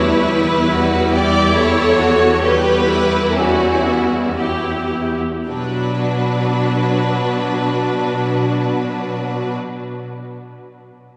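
Cinematic, emotional film score for string orchestra in 3/4 with a rubato feel, bittersweet and full of longing, cut from a longer piece. A clear, intense violin section carries the melody up front over a smooth, even chamber violin second line, a bright, close viola accompaniment and a rich, focused cello bass, each bowed with vibrato. The music slows through its opening 5.5 seconds over an Emadd9 chord before moving to a Bm chord, heard in the long reverb of a church.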